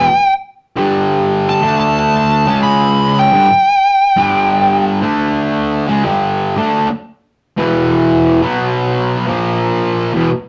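A rough rehearsal-room sound with tube saturation and a moderate studio reverb frames this sludgy, brooding metal fragment, cut from a longer piece and moving at a slow 70 BPM in 4/4 with a swung eighth-note feel. A double-tracked, compressed fuzz guitar grinds out a low riff up front through to 10.3 seconds, while a dark, distorted fuzz lead guitar sings a high melody over it until 4.9 seconds. The harmony shifts from G5 through D5 and C#5, later moving to E5, B5 and A#5.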